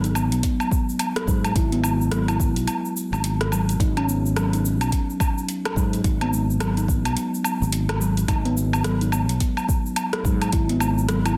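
Organic downtempo in G# minor at 107 BPM, this hypnotic excerpt swings lightly on the sixteenths as a ringing steel tongue drum, struck with rubber mallets and touched by tape echo, plays meditative arpeggios over a growly, up-front fretless electric bass that sustains through chords moving from G#m to G#m7. A deep house kit of metallic hi-hats, rim click, shaker and woodblock carries overdrive and the air of a large room, joined at 0.4 seconds by a deep, overdriven electronic kick that drops out at 10.7 seconds. Light digital ambience surrounds a dense, heavily limited modern master.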